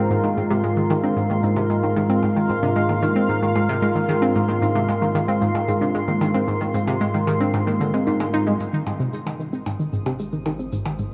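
A steady, straight 4/4 pulse at 113 BPM drives this expansive, luminous stretch of ambient, sequencer-driven space music in Ab major, cut from a longer piece and sitting on a single Ab chord. Cabasa and electronic percussion blips, tape-warm and re-recorded in a small room with delay, fade in over the first 8.6 seconds alongside a twinkling, sparkling granular texture that glints high above with an octave-up shimmer. Up front, a sweeping resonant pad of detuned sawtooth holds sustained chords through a filter swell, while a bright, round analog pluck repeats a riff with chorus and delay, its ring-modulated edge and filter sweep giving it bite. Further back, a mellow, tine-like thumb-piano-style synth pluck spins gentle arpeggios through cassette tape coloring and delay, with a filter sweep running across its sound. At 9.9 seconds a soft, evolving analog drone enters on a low Ab, its pulse-width modulation and moving notch adding slow motion beneath. 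The whole sits in a vast, echoing cathedral reverb with a long 5.3-second tail.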